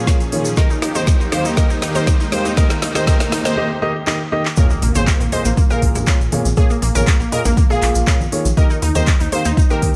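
A straight 4/4 pulse at 120 BPM drives this progressive house cut from a longer piece, with a deep, up-front electronic kick, a deep house kit of handclaps, woody snare and smooth pumping hi-hats, and a grainy egg shaker, while very quiet, hard-handed congas ring in from 5.0 seconds. In Bb dorian over Bbm7 and Eb, a detuned, bright unison pluck plays arpeggios and a concert grand piano with a deep bass adds stabs, both carrying tape echo and sidechain pumping. A lush supersaw pad holds chords in the background only until 3.5 seconds, and a quiet riser climbs through the build-up and break into an impact at the 4.6-second drop, after which a punchy, funky, wave-folded analog bass joins at 4.8 seconds for a driving, expansive feel in light reverb.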